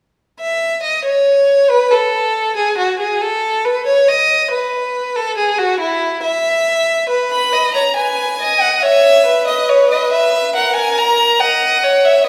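A rich, focused solo violin opens this lively, elegant excerpt of a baroque-style classical fugue at 0.4 seconds, bowing an up-front second line with vibrato at 69 BPM in a straight 4/4 tuned to A4 = 442 Hz, before a clear, close violin enters at 7.3 seconds with a vibrato-laden melody higher in range, both set in a wet recital-hall reverb that is heard from further back in the room.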